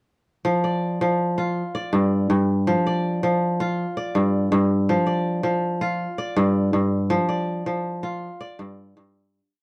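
Set in a straight 12/8 that rolls along in dotted-quarter pulses, this short West African traditional piece feels joyful and flowing from its first note at 0.4 seconds. A lone acoustic kora carries the entire performance, fingerpicking an interlocking ostinato that spans from G2 up to D5. Its tone is ringing and crisp, placed up front in the mix. The harmony rocks steadily between Dm/F and G5 throughout the single section. A moderate studio reverb gives the feel of a live room, and the piece fades out from 7.1 to 9.3 seconds.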